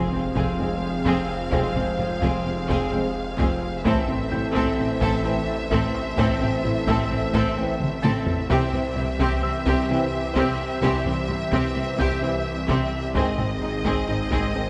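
A clear, intense violin section carries the melody of this brooding, relentless hybrid orchestral and electronic film cue in 5/4, over a rich second violin line, a distant viola section, very quiet cello and double bass sections, a mellow French horn section from 0.6 s, a shimmering retro pulse-width pad, a dark harp-like synth pluck playing arpeggios, a thick detuned saw bass, a dark concert grand piano with delay, and a background taiko ensemble struck with hard sticks, all in a concert hall reverb, with a faint electronic impact in the opening 1.5 seconds and a drum fill at 7.8 s.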